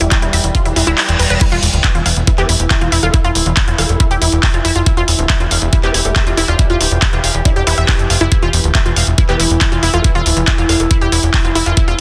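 A mellow, morphing wavetable pad with chorus and its own reverb opens this alien, hypnotic psychedelic trance passage at 139 BPM in E phrygian, alongside a bright, detuned unison pluck riff echoing through digital delay (both pumping to the sidechain), a punchy, funky analog bass, and an up-front techno kit of crash, handclaps and warm hats. A knocking electronic kick joins at 0.1 seconds, while a dark, nasal vowel-sweep wobble bass sits in the background with lush chorus and tape echo. A very quiet reverse cymbal rises into a band accent at 1.0 seconds as the kick briefly drops out, and then the drop lands at 1.4 seconds with an impact, all held in a dense, heavily limited modern mix with light reverb.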